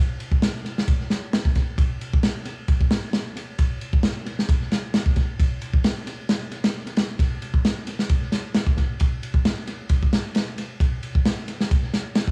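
A crunchy breakbeat drum kit carries this raw, energetic fragment from 0.2 to 12.3 seconds, its tight kick, medium-tuned snare and dark ride cymbal sitting up front with a saturated, gritty grain and a rolled-off top. The groove moves at 133 BPM in 4/4 with a slight swing on the sixteenths, and tape echo trails the drums. Vinyl crackle, light reverb and small-room ambience give the echo-heavy mix a dusty, lived-in feel.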